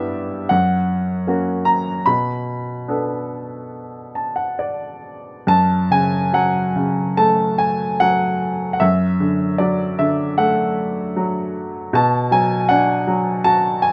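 A clear grand piano sits up front in a light reverb, its tone present in this short classical passage cut from a longer piece. The solo piano plays lyrically in 4/4 at 67 to 80 BPM, with a rubato feel and a reflective, dark mood. The music opens in B minor, moving through Em/G, F# and Bm7 across a range from F#2 to B5, with the tuning set to A4 = 438 Hz. A piano fill arrives at 3.7 s and leads into a new section at 5.5 s, where the key turns to F# minor. The harmony then passes through F#m and D/F# before settling on Bm as the passage closes at 13.9 s.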